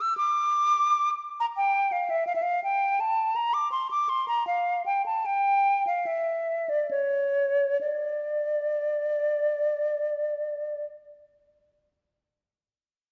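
Set in a free, rubato 4/4, the phrases stretch and give, with the pace gradually slowing from the opening moments until about 7.8 seconds, when a new passage begins. This is a baroque-style classical fantasia for a single unaccompanied concert flute, grave yet flowing in mood, and cut from a longer piece. The flute plays alone from the start until 10.8 seconds, moving between C#5 and E6 with an airy, hollow tone, vibrato and a crisp attack. Close-miked and up front, it sits in a wet scoring-stage reverb that lingers around the line. The overall production is dark and warm.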